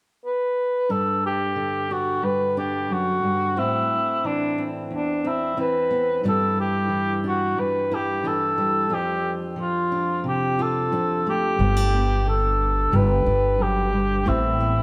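A wet plate reverb with a long 3.2-second tail fills this recording, which is heard from further back in the room. It is a heartfelt, tender acoustic folk-pop ballad in G major at 90 BPM in a straight 4/4, cut from a longer piece. A mellow cor anglais carries the solo melody from 0.3 seconds, sounding distant and roomy with light vibrato in a classical style, while a fingerpicked steel-string concert acoustic guitar joins at 0.9 seconds to accompany it. The guitar moves through gentle colours such as G5, Amadd9, Gsus2 and F6. At 11.6 seconds, as the harmony settles onto G, a woody, dark upright bass enters with growly pizzicato notes low in its range, up front in the mix.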